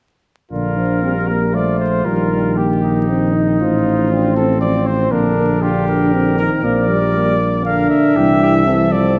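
At 0.5 s a brass quintet begins together in a noble classical passage in 3/4, cut from a longer piece: a clear trumpet carries the melody with vibrato, and a second, more distant and roomy trumpet with light vibrato plays a supporting line. A French horn and a distant euphonium with light vibrato provide accompaniment in the background, while an up-front tuba with a mellow, smooth top holds the bass. A wet scoring-stage reverb surrounds the ensemble, and the dark, warm production carries vinyl crackle.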